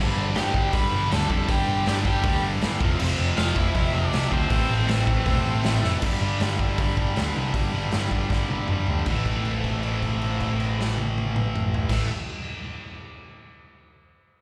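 An angry, raw punk rock clip from a live club gig opens with a stack of riffing guitars: a tight, distorted one, a compressed one tucked in the background, and a very quiet, sludgy, double-tracked layer that drops out at 6.0 seconds. A bright, amped picked bass plays alongside them from the start, and an up-front garage drum kit with a punchy kick, gritty saturation and a rolled-off top comes in moments later. A bright overdriven lead guitar carries the melody until 5.8 seconds, a drum fill leads into a final held note at 9.1 seconds, and the band sits in the venue's club reverb.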